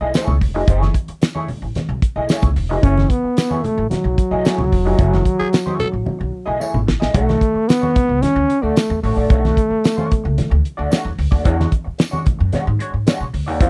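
A dry, close studio sound in the 1970s style frames this sly funk passage at 111 BPM in straight 4/4, cut from a longer piece. A damped 70s drum kit sits up front with a fat snare, a tight kick and hi-hat, while a woody pizzicato upright bass holds the low end, moving over F#m9 before shifting to Bm9 and then E13. A dark, clean hollow-body jazz guitar picks an accompaniment through a wah, with low-tuned congas and a jingly, compressed tambourine tucked in the background. The warm trombone carries the melody from 2.8 to 10.6 seconds, punchy with vibrato and a smooth top. A growling, raspy tenor saxophone cuts in briefly at 5.4 seconds during a band accent, just before a drum fill leads into the second section.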